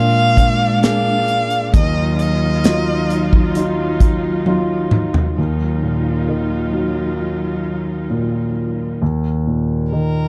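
Heartbroken and emotional, this brief excerpt from a longer pop ballad moves at a slow, straight pulse in 4/4. A dark, expressive solo violin carries the melody up front, bowed with vibrato, a soft attack, portamento and a smooth top, its line trailed by tape echo; it sings until 3.5 seconds and returns briefly near the close. A concert grand piano with deep bass and a warm, up-front tone plays the accompaniment throughout, while a studio string section holds smooth, even sustained chords with vibrato until 9.0 seconds. A punchy, acoustic studio drum kit with a medium-tuned snare and a pumping room sound enters at 0.4 seconds on hi-hat, kick, snare and toms, closing its part with a fill that ends at 5.4 seconds. The harmony opens on Bb7 and settles into Ebmadd9, finally resolving to a bare Eb5 under light reverb.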